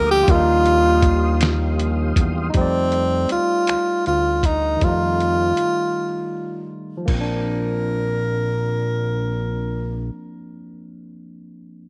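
This slow, tender R&B piece in 6/8 at 53 BPM in Bb major begins with a breathy tenor saxophone carrying the melody, accompanied by a barky, lightly overdriven tine electric piano, an analog bass and a smooth tonewheel organ holding sustained chords through a slow rotary speaker with chorus vibrato and key click. At 0.3 seconds a dusty, compressed sampler-style drum kit enters up front, with a thumpy kick, fat snare, hi-hat, finger snaps and crash cymbal. The close-miked saxophone is clear and intimate, played in a jazz style with scooped notes and a slapback echo, while the thick, saturated bass has a plucky filter and fast attack. The organ stops at 2.5 seconds as the harmony moves from Ebmaj9 to F13, and after a brief break the music settles on Bbadd9, with the electric piano ringing on alone until 11.9 seconds. Digital ambience surrounds the parts, and the recording is cut from a longer piece.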